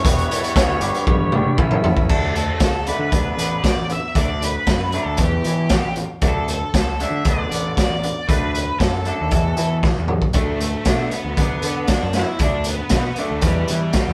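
This short indie rock clip, cut from a longer piece, has the sound of a band playing live in one room, with a moderate stone-room reverb giving it a gritty, lo-fi edge. At 116 BPM in 4/4 with a straight feel in D major, the mood is carefree and jangly. A raw garage drum kit sits up front with a punchy kick, a medium-tuned snare, hi-hat, crash and toms, its saturated, pumping character rolled off at the top, and fills land at 1.1 and 9.8 seconds. Beneath it, a fuzz picked electric bass drives the low end with overdriven punch, while an electric guitar through a small old amp plays a twangy, slightly broken-up riff. An octave-fuzz lead guitar carries the distorted melody throughout, and a tonewheel organ with slow rotary speaker, chorus vibrato and key click holds smooth, clean chords in the background only until 2.1 seconds. The chords move from Emadd9, G and Aadd9 into a cycle of D5, Bm and D, touching E5 before settling back toward D5 and Em by the end.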